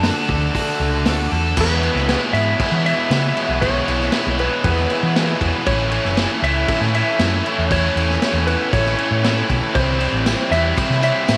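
Over a straight 117 BPM classic rock beat in E mixolydian, a punchy, dark-cymbaled vintage kit and a round, hollow-body bass drive two overdriven picked guitar riffs, one bright and one warmer, while a twangy, compressed lap steel sings the sunny melody, a very quiet fast-rotary organ holds key-clicking chords, a dark octave-fuzz guitar adds a faint second line from 1.6 seconds, and a jingly tambourine slips in at 10.3 seconds, all bathed in a moderate echo-chamber reverb as the chords move from D through E and A to C.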